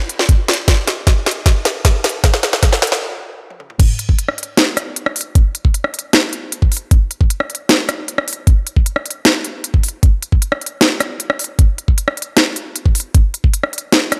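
A knocking electronic kick drum sits up front in this lush, bittersweet future bass passage, cut from a longer piece and moving in a half-time feel. The trap kit brings a sharp snare, crisp high-passed hats, toms, rim clicks and crash cymbals with a tape-warm character, opening with a build-up of drum fills that halts at 3.0 seconds before the drop lands at 3.8 seconds. Light reverb and digital ambience give the drums a produced sheen.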